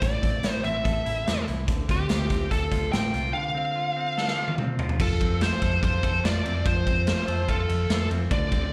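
Bright and breezy, this short fragment of jangly indie pop in F major moves at 145 BPM in a straight 4/4, with a dark, high-gain lead guitar carrying the melody up front through distortion, slapback echo and analog delay, a clean, hollow-body semi-hollow electric guitar picking arpeggios through its own slapback echo and analog delay, a round, foam-muted vintage fingered electric bass, and a punchy, gritty garage drum kit whose fill from 4.2 seconds leads into the F chord at 5.0 seconds after the Am and Dm7 of the opening, captured as a live gig heard through the venue's PA with club reverb.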